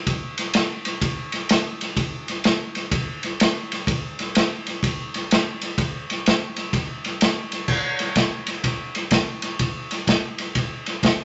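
Blues drum groove at 126 BPM in 4/4, swung on the eighth notes, with a gritty, swaggering mood. A vintage acoustic drum kit is the only part, playing from 0.1 to 11.2 seconds with crash cymbal, kick drum, ride cymbal and snare drum. The kit sits up front in a small, pumping room, with dark cymbals, a medium-tuned snare and a punchy kick, its top end rolled off. The overall sound carries moderate studio reverb and a dull, capped high end. The passage shifts into a new section at 7.7 seconds and runs to the close of this fragment cut from a longer piece.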